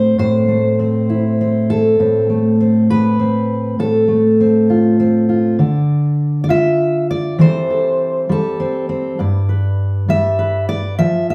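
Folk excerpt for solo fingerpicked steel-string acoustic guitar, gentle and warm in a straight 6/8 at 67 BPM in G mixolydian, its full-bodied jumbo tone set up front yet softened by a small room's reverb heard from further back, moving from Am and F/A into a second passage at 5.6 seconds through Dmadd9 and C6/E before settling on G.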